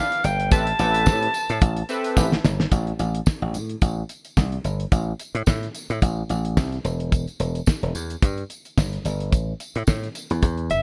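Bright 1980s-style digital production with light reverb frames this late-night, danceable early-eighties boogie funk excerpt at 109 BPM in A minor, where a punchy, vibrato-laden alto saxophone with delay and a glossy, detuned chorused polysynth open over Am9 alongside a damped, fat-snared 70s drum kit with sampler grit, a dry, foam-muted thumbed slap bass with tube saturation and a jingly tambourine, before the saxophone and polysynth fall away by 2.3 seconds; after a drum fill at 2.2 seconds the drums, bass and tambourine carry on through Em and A5 until the saxophone reappears briefly at 10.7 seconds.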